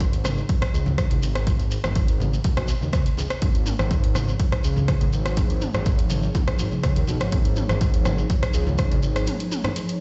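A straight 4/4 afro house groove at 123 BPM runs from the top, built on a punchy electronic kick up front and a deep house kit of hi-hat, rim click and toms, both overdriven, with low-tuned, damped congas set back and a grainy shekere heard close. A deep, rumbling detuned saw bass pumps with sidechain until it stops at 9.3 s for a short break, while the harmony settles on C#add9/G# at 3.4 s and an ethereal, airy pad with ensemble chorus and built-in reverb enters behind at 4.4 s, also pumping. The hypnotic cut sounds as if played on a big system in a bare room, dull above 8.0 kHz.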